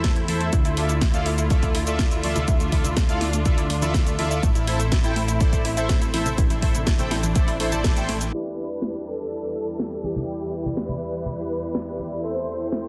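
Progressive house in a driving, expansive mood, this cut-out from a longer track sets a punchy, up-front kick and a cracking house kit with hi-hat, shaker and snare under a plucky, wave-folded analog bass, tight arpeggios from a mellow, phaser-tinged sequenced synth, smooth supersaw stabs with cassette-tape character and digital delay, veiled con sordino strings holding dark sustained chords, and congas in the background, with sidechain pumping on the strings, arpeggios, supersaw, bass and congas. A band accent lands at 7.8 seconds, the kick drops out just before 8 seconds with the arpeggios and bass following around 8.3 seconds, and a thick, bold unison lead with vibrato enters as filter sweeps run across the strings and the mix over chords moving from Em7 back to Am/E. The sound is dense and heavily limited, with light reverb.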